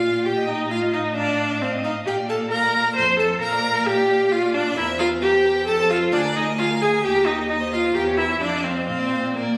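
This quick classical-period movement for string quartet in triple time is a short, cheerful and lively excerpt from a longer piece. A clear, smooth and even violin carries the melody with vibrato, set close, while a second violin sits distant in the background with an expressive line touched by portamento. The viola stands up front and sounds loudest of the four, its accompaniment rich and expressive with vibrato and sliding portamento. Beneath it, a focused cello holds the bass close by, bowed with vibrato. The harmony moves through chords such as F7/A, C7/E and an Edim7 before settling on Bb at 8.9 seconds. The sound has a wet recital hall reverb, captured on a phone in the room with added studio reverb.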